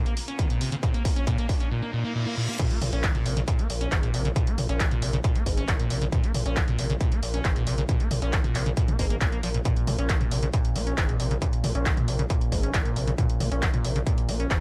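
Driving peak-time techno with an intense, industrial mood, this straight 4/4 cut from a longer piece opens on a short build-up before the drop lands at 2.6 seconds. A squelchy, resonant sawtooth acid bass runs its riff from the very start, treated with lush chorus, sidechain pumping and tape echo, while a very quiet, airy and breathy pad with detuned layers, chorus and phaser hangs underneath only until 1.7 seconds. A punchy analog drum machine, re-recorded in a small room, brings crash cymbal, handclaps, hi-hat and toms, with a drum fill during the build as a riser and reverse cymbal sit in the background. An overdriven, distorted kick sits up front from 0.4 seconds to the end, and just after the drop, at 2.8 seconds, a gritty, nasal synth bass with oscillator sync and sidechain pumping joins, aggressive and up front on its low notes. The mix is dry, with little reverb, and the drop carries on to the end of the cut.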